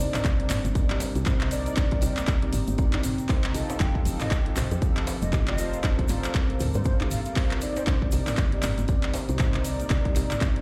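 Heard in a large, reverberant room as if played over a big sound system, this driving, spiritual afro house excerpt at 118 BPM with swung 16ths rides a punchy, up-front electronic kick and a house kit of handclaps, hi-hat and toms, alongside a very quiet djembe, a grainy egg shaker, a round, woody FM bass, a ringing kalimba whose background arpeggios carry tape echo, mellow synth brass stabs with a nasal bite, and a smooth, warbling analog pad holding sustained chords, the bass, kalimba, brass and pad all pumping under sidechain, while a breathy bansuri with vintage 12-bit grit and tape echo carries the melody from 3.8 to 8.0 seconds.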